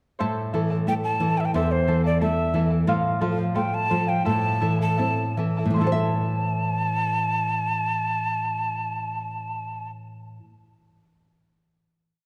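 Melancholic and wistful, this complete Andean folk piece in A minor moves in a straight 2/4 at 72-90 BPM. A woody, full-bodied nylon-string guitar sits up front with fingerpicked bass notes and chord figures, and a mellow charango adds shimmering double strings. A breathy cane quena enters at 0.9 s with a close, unsteady, vibrato-laden song-like melody full of tongued chiff. The tempo slows from 2.9 s before the ensemble settles on a final chord at 5.8 s, all within a lush concert-hall reverb.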